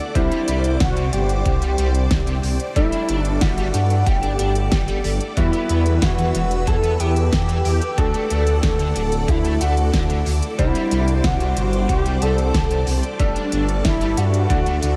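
Cinematic and nocturnal, this synthwave excerpt in a straight 4/4 drifts through a dreamy mix soaked in huge ambient reverb, moving over Csus2, Gsus2, Emadd9 and D chords. An expressive, smooth sawtooth lead with vibrato carries the melody through a diffuse ambient delay, shadowed by a very quiet FM bell line. Beneath them sit lush string-machine chords with phaser, ensemble chorus and sidechain pumping, a picked, overdriven semi-hollow guitar riff and clear electric grand piano stabs with a clangy low end in the background, a deep, rumbling detuned saw bass up front with tube saturation, and a layered, tape-warm kick and pop kit with a fat snare and crisp hats.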